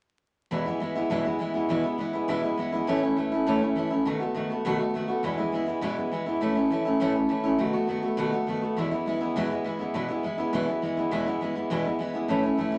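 A picked steel-string acoustic guitar, full-bodied and up front, plays alone through this rowdy, retro rock excerpt at 204 BPM in E major, cycling E, A and B7 from 0.5 to 12.8 seconds under a moderate large-studio reverb and a crackling, dulled vinyl sheen.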